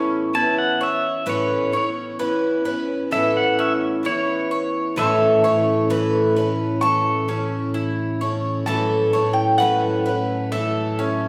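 A shimmering, up-front twelve-string acoustic guitar and a bright bowl-back mandolin's arpeggios open this peaceful, gentle acoustic folk excerpt at a slow 65 BPM in 4/4, joined at 0.3 seconds by a twangy, compressed pedal steel guitar that takes the lead with fingerpicked slide lines and volume swells over an Aadd9 chord, until at 5.0 seconds the harmony settles on A as a round, double-strung mandolin enters with the melody, the steel shifts to a high second line, and a soft, flute-like tonewheel organ adds sustained chords through a slow rotary speaker, all set in a wet church or concert-hall reverb.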